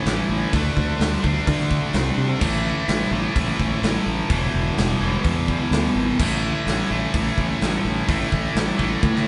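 Recorded as a band playing live in one room, with moderate studio reverb and a top end that stops at 10.8 kHz, this driving, menacing hard rock excerpt at 127 BPM in straight 4/4, tuned to A4 = 444 Hz, puts a high-gain, distorted, double-tracked electric guitar riff up front over A5, D5 and E5 chords, backed by a growly, fuzz-overdriven fingered bass and a big, natural acoustic drum kit with bright cymbals, a medium-tuned snare and a punchy kick, which plays a fill at 9.0 seconds.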